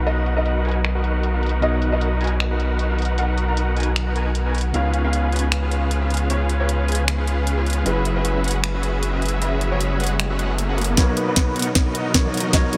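A dreamy, reverb-soaked mix opens this playful, bright slice of future bass, moving at 154 BPM in a half-time feel with a light swing on the sixteenths, in B major. Huge, detuned supersaw chords carry the riff with lush chorus, a low-pass filter and sidechain pumping, while a deep, saturated sub bass sits up front beneath them. In the background, a worn, slightly out-of-tune tine electric piano and an intimate baby grand, its action noise audible, spin out the accompaniment and melody through diffuse delay, and a very quiet, shimmering pad adds ethereal, warbling sustained chords. A trap kit of finger snaps, bright hats and a sharp snare gives a tape-warm pulse, its parts softened by low-pass filtering. The harmony moves from Bmaj7 through C#7 and F#9sus4, a faint riser enters at 9.1 seconds, and at 11.0 seconds the sub bass stops as a knocking, layered electronic kick and a drum fill drive a build-up back onto Bmaj7 before this cut from a longer piece ends.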